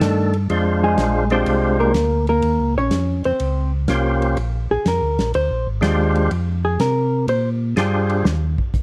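Swung in 4/4, this greasy, bluesy soul jazz organ trio fragment puts a percussive, key-clicking tonewheel organ melody up front with light overdrive, slow rotary speaker and plate reverb, over clean, fingered hollow-body jazz guitar accompaniment, a round, mellow organ bass with chorus vibrato and slow rotary, and a small-room soul drum kit of punchy kick, medium-tuned snare, hi-hat and dark ride cymbal, set in a lightly reverberant space.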